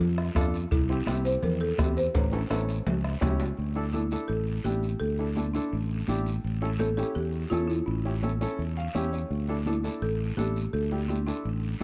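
A dark production with light reverb and a faint mains hum frames this fiery, passionate cumbia excerpt at 168 BPM, where a dry, rustic folk marimba with hardwood bars carries the melody over a bright, growly fingered electric bass sitting up front. High-tuned congas struck with hard hands and a raspy, close guiro run throughout, while ringing vintage cowbell and timbales and a soft-beaten bombo drive the opening through a drum fill before dropping out by 3.5 seconds. A clear, intimate upright piano with audible action noise joins at 0.4 seconds as accompaniment and adds a brief fill at 8.6 seconds before the harmony returns to Dsus2.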